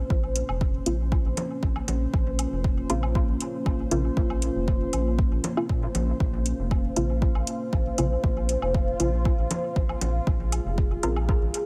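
An overdriven, deep electronic kick sits up front in this hypnotic, cavernous dub techno excerpt, joined by metallic analog hi-hats and a round, wave-folded analog bass that pumps under the sidechain. A dark, detuned sawtooth pad holds a sustained Bbmadd9 chord while a muted, filtered chord stab with phaser and dub echo carries a filter sweep throughout, and a bubbling, resonant texture of random filter steps drifts behind in its own reverb. Tape-warm woodblock and congas, thrown into dub echo, fill out a dry mix that runs for the full 11.7 seconds as one unbroken section.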